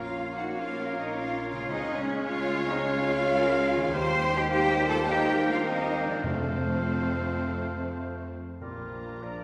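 A classical orchestral passage cut from a longer piece, urgent and restless at 104 BPM in 4/4 with uneven beats, settling into Bb major from 3.9 s as the harmony moves from Bbm through Db, Cm7/Eb and F to a close on Bb. From 0.6 s a clear, intense violin section carries the melody with vibrato from the background, while a second violin section with a soft attack and expressive vibrato shares a second line with a pure, very quiet silver flute, a distant, roomy oboe and a clear clarinet. Beneath them a rich, even viola section and a clear bassoon fill the accompaniment, and a dark French horn section holds sustained chords with a smooth top. The bass is anchored by an up-front cello section of intense, rich tone and a clear double bass section, with a very quiet harp ringing out fingerpicked arpeggios. Timpani with medium mallets on calf heads join at 6.2 s, and a wet concert hall reverb with a 1.7-second decay gives the ensemble a spacious, church-like depth.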